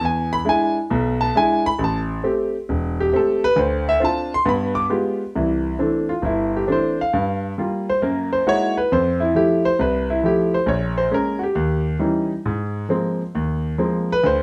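A lone concert grand piano opens this relaxed solo jazz passage, swinging its eighth notes in 4/4 over a chord run that moves from E7 through Am7 and Dm7 before the phrase repeats and drifts toward Bbm7, Eb7b9 and a closing Ab69. The piano sounds clear and a little worn, with a deep bass reaching down to E1 and a natural tone reaching up to D6. A wet studio reverb places the listener further back in the room, giving this warm 14.4-second fragment of a longer piece an easy, unhurried glow.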